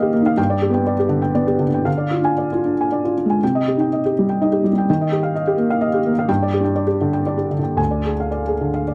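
Lightly reverberant and dark-topped, this melancholic, intimate neoclassical minimalist excerpt features a solo felt-muted upright piano, boxy and up front with audible action noise, playing rubato in 3/4 at 107-130 BPM across D2 to Ab5, tuned to A4 = 441 Hz, moving through G, Ddim, Cm, Ebadd9 and G5 before returning to Ddim at 7.8 seconds.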